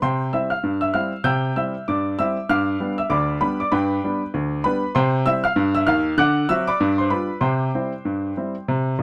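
Ragtime piano in C major, a playful, jaunty excerpt cut from a longer piece and moving at 97 BPM in 2/4 with a light swing on the sixteenth notes. A single upright piano carries the whole thing from 0.0 to 9.0 seconds, ranging from B1 up to G6. Its tone is woody and intimate, sitting up front in the mix, with the mechanical action audible beneath the notes. The harmony moves from C to G7, returns to C at 5.0 seconds, then passes briskly through D7 and G7 before landing back on C at 7.4 seconds. A light reverb frames the polished playing and keeps the sound close and present.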